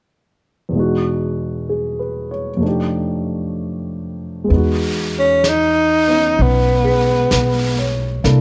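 A grand piano opens alone at 0.7 s, its audible action noise close and natural as it voices Emaj9 and F13 in this intimate, late-night jazz ballad at a slow 64 BPM in E major, with swung eighths. At 4.5 s, as the harmony settles on Emaj7, a woody pizzicato upright bass and a soft brushed snare and hi-hat from a vintage kit in a small room join, and at 5.2 s a breathy, close-miked tenor saxophone steps up front with a warm vibrato. The dry, near-reverbless sound and the fragment's brevity make it feel lifted from a longer piece.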